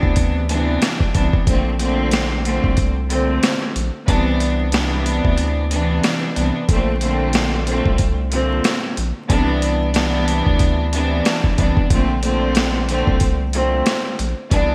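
Nostalgic boom-bap hip-hop excerpt at 92 BPM in Bb major, where a gritty, pitched-down sampler drum kit with a thumpy kick and high-tuned snare swings its 16ths beneath an up-front chamber string section of reedy gut-string tone and light vibrato, filtered at both ends, while a round, dark analog bass holds the low end through alternating Cmaj9 and Bbmaj9 chords, the kick dropping out from 5.4 to 6.7 seconds, all set in light reverb with bright 1980s-style digital sheen and vinyl crackle.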